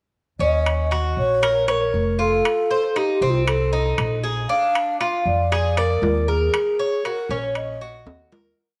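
Latin Cuban son and guajira in a sultry mood, with an airy, hollow alto flute singing motif-based song phrases with vibrato and a slapback echo over a metallic, picked tres guajeo that also carries slapback, a woody, thumpy pizzicato upright bass playing an anticipating tumbao, and ringing metal-shell timbales on shell and bell, all set in an echo chamber with tape saturation, fading out from 6.5 seconds before a closing drum fill at 8.1 seconds.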